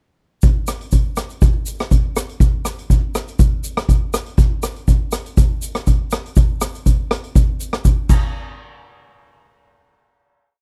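A festive, carefree calypso piece at 121 BPM in a straight 4/4 opens at 0.4 s with a street-band drum kit playing a calypso groove up front, its boomy kick, dark crash and hi-hat, and rim clicks sounding alongside a grainy, bright egg shaker sitting close in the mix. The dry, close 1970s-style sound keeps the kit airy and polished through the short verse. The drums stop at 8.2 s, with the shaker carrying on briefly into the final hit that closes the piece.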